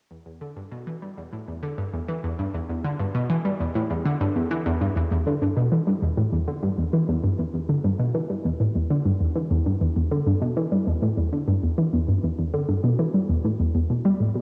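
In a straight 4/4, a bright, detuned analog pluck riff in a low register, with a fast attack, short decay, a noise layer, ring modulation, chorus and delay, fades in over the first 5.0 seconds and then carries a filter sweep until 14.4 seconds, sitting up front in a wet spring reverb on a home cassette recording that gives this ambient fragment its hypnotic, cosmic mood.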